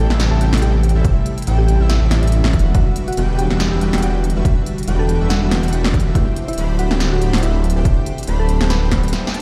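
A dreamy, lush future bass cut at 141 BPM in E minor opens on a round, tine-like thumb-piano-like synth pluck melody with chorus, delay and sidechain pumping, over a breathy, very quiet airy pad holding chords, a soft airy lead playing background arpeggios, a smooth, evolving supersaw riff and a thick, detuned saw bass up front, all moving through Am7, Em9 and D7sus4 in a swung, half-time feel, with a big-room dance drum kit of punchy snare and crisp hats arriving at 0.1 seconds, a punchy electronic kick joining at 1.0 seconds, and a drum fill and break at 9.1 seconds, all in a roomy, large-reverb sound.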